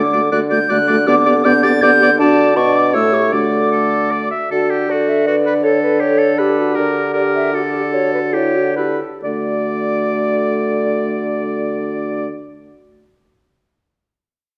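In 3/4 with rubato, this quick, graceful and spirited classical-period movement for wind quintet moves between 126 and 165 BPM in D major, easing into a slowdown from 6.2 to 9.2 seconds before settling back on D. The airy, crisp-attacked flute carries the melody from a distance while the clear oboe adds a second line with light vibrato, the dark, soft clarinet and smooth-topped French horn fill in the accompaniment, and the up-front bassoon anchors the bass with a vintage character. A reverberant recital hall gives the dark, warm production its sense of space, and the fragment is cut from a longer piece.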